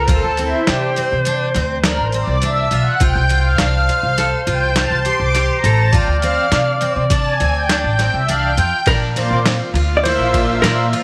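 This brooding progressive instrumental in 5/4 opens with a lush, detuned unison pad up front, a woody pizzicato upright bass and a mellow alto saxophone carrying a subtone second line with vibrato, scooped notes and a slapback echo. At a straight 102 BPM in D minor, a shimmering, octave-doubled twelve-string acoustic guitar picks arpeggios while a gritty, pitched-down boom bap sampler-style kit supplies a thumpy kick, medium-tuned snare, hi-hat and ride. The chorused analog pad carries a solo through the tense opening as the chords move from Dm7 to F/C to Dm. The kick and snare drop out at 8.3 seconds, and at 8.9 seconds the harmony shifts to Bbadd9 as a dark, clean hollow-body jazz guitar enters with the melody. The sound is dry, and this is a short cut from a longer piece.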